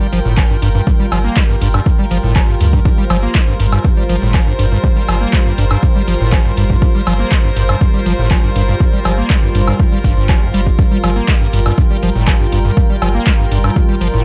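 An overdriven electronic kick drives this gritty acid house cut at 121 BPM in G minor, sitting up front with a punchy analog thump from 0.4 to 13.9 seconds. Around it, an overdriven analog drum machine fills in cabasa, cowbell, handclaps, hi-hat and woodblock, both re-recorded in a large room. A squelchy, hollow square-wave acid bass carries the riff with a resonant filter sweep, tube saturation, analog chorus and digital delay. A deep, thick saturated sub bass enters at 0.1 seconds and anchors the low end. A smooth, detuned sawtooth pad with a moving notch and chorus holds a Gm7 chord, while a distant, reedy chamber string section in period style adds bowed texture. Pad, acid bass, sub and strings all pump against the kick, and the production is dark and warm with little reverb, giving a driving sound across this short section of a longer piece.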